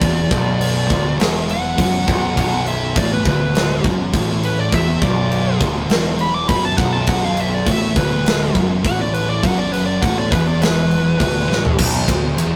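An up-front acoustic rock drum kit with a punchy kick, bright cymbals and a big-room sound drives this ominous, sludgy stretch of stoner and doom metal, cut from a longer piece, and plays a fill at 11.5 seconds. A dark, compressed fuzz lead guitar carries a solo melody until 11.8 seconds over a low riff from two fuzz guitars, one distorted and one very quiet, and a very quiet, double-tracked overdriven electric guitar. A growling fingered electric bass with overdrive and tube saturation sits in the background, and the rough rehearsal-room recording adds light reverb and tube saturation.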